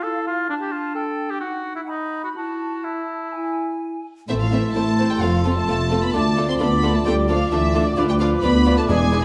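Restless and dramatic, this quick classical-period movement for symphony orchestra in A minor moves at 130 BPM in a straight 4/4. It opens with a dark solo clarinet, a warm oboe and an airy flute section, each carrying a second line. At 4.3 s the strings arrive, bowed sul tasto with a soft, floating purity: a warm violin section carries the melody over a second violin line, a rich viola accompaniment and a cello and double bass foundation, while a tight French horn section holds sustained chords in the background. Timpani played with hard mallets enter briefly at 8.9 s, and a stone-room reverb surrounds the ensemble before the cut.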